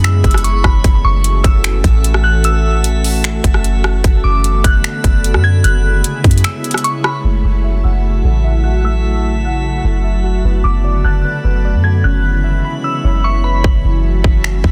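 Atmospheric cloud-rap hip hop with a hazy, ethereal mood, moving in a half-time feel over a slow drift of minor seventh chords. A glassy synth bell carries the melody high up, its crystalline, vintage tone warbling through chorus, tremolo and digital delay, while a glassy FM pad holds sustained chords that pump against the beat and sit in their own reverb. Up front, a soft 808-style bass gives deep, round, sine-like notes, and a trap drum kit of hard-clipped kick, metallic hi-hats, rim clicks and finger snaps drives the first half before a break at 6.4 seconds. From 7.2 seconds, warbly lo-fi synth keys add nostalgic, detuned arpeggios under a filter sweep, and a faint drifting glass-harmonics texture floats beneath everything as calm overtones. The drums return at 13.6 seconds with the hi-hats muted, all in a dry, dense, heavily limited modern master cut from a longer piece.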